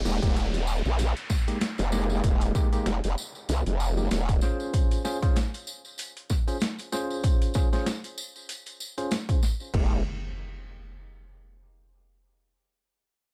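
A swung 96 BPM glitch hop groove in 4/4 and F minor rides a punchy, up-front electronic kick under a pitched-down, overdriven boom bap sampler-style kit with a high-tuned snare, crash and hi-hat, plus a jingly close tambourine, all set in a dark, dry production with a swaggering, gritty mood. A growling, wobbling growl bass with chorus and tube saturation holds the low end through 4.4 seconds and returns briefly at 9.7 seconds, while a bell-like tine electric piano stabs over Fm11 and Dbmaj7 chords with sidechain pumping, delay and a low-pass filter sweep. An electronic downlifter and impact frame the passage, sounding again from 10.0 seconds as this cut from a longer piece shifts into its second section.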